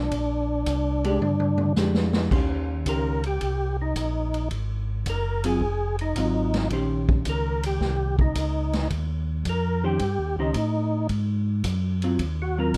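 Soul jazz organ trio in a swinging, soulful mood, cut from a longer piece. A percussive, lightly overdriven tonewheel organ carries the melody through chorus vibrato, a stopped rotary speaker and plate reverb, while a second, mellow and round tonewheel organ plays the bass lines through a slow rotary speaker. A roomy big-band drum kit with a punchy kick and a dark, clean hollow-body jazz guitar (entering at 1.0 seconds) fill out the sound, with a drum fill at 1.2 seconds leading into an organ solo from 2.3 seconds in this dark, warm production.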